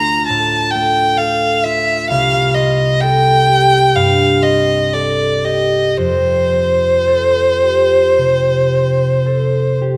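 A rich, smooth, even violin sings the melody up front with vibrato, floating over a ringing, fingerpicked concert harp in this hazy, mysterious impressionist duo excerpt, moving rubato through Dm7, C5 and Fadd9 in a moderate recital hall reverb.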